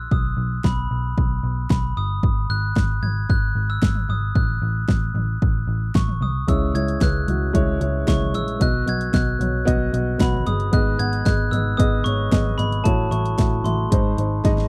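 Piano-driven pop with a driving, dramatic mood, this excerpt opens with a bell-like glockenspiel melody played with soft plastic mallets and carrying a slapback echo, over a round, foam-muted picked electric bass and an up-front, overdriven deep house drum kit with a punchy kick and fat snare. At 6.5 seconds a dark, woody upright piano joins as accompaniment, worn and slightly detuned with audible action noise and long sustain, and a drum fill arrives at 14.4 seconds. The sound is dry and close, like a 1970s studio recording.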